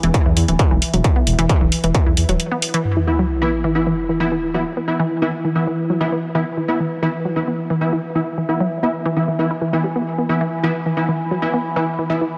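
A unison pluck riff, punchy and saturated with a warbling cassette-tape tint and delay, opens this hypnotic, industrial slice of driving peak-time techno at 133 BPM. It rides over a resonant drone of moving overtones, a dark detuned saw bass, overdriven hi-hats and a distorted kick in 4/4, the drone, bass and hats pumping against the sidechain. The kick drops out at 2 seconds and the bass at 2.4 seconds for a brief break, while the hats run on until 2.8 seconds. An up-front sub drop lands as an impact at 2.8 seconds, and from 3.1 seconds an aggressive, thick rave stab with a filter sweep, chorus and digital delay joins the pluck and drone through the rest of the section.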